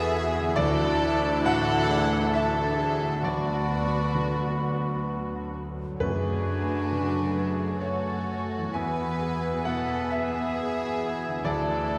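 A soft, floating symphonic violin section carries the longing melody of this moving cinematic film cue in a rubato three-four, over second lines from a clear clarinet, a dark cor anglais, a hollow flute and an intimate chamber violin section, with a bright grand piano and a very quiet, woody viola section in accompaniment, tight French horns holding sustained chords, a ringing harp playing arpeggios, a bowed double bass section and a distant cello section on the bass, and calf-headed timpani sounding only from 6.0 to 7.3 s, set in a wet concert-hall reverb.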